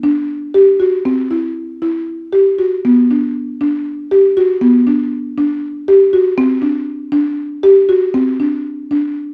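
Restless and pensive, this short contemporary instrumental passage is cut from a longer piece and features a single buzzing marimba played solo with soft mallets. Set in an uneven 7/8 metre with a straight feel, it moves through a brief opening idea before shifting into a new section at 2.9 seconds that carries on to the close at 9.3 seconds. The marimba stays in a compact middle range, its hardwood bars giving a woody, round, warm tone with a buzzing edge. Close, detailed microphones place the instrument up front, so its mellow, airy character comes through clearly. A light reverb surrounds the otherwise dry sound, lending the solo line an intimate, contemplative presence.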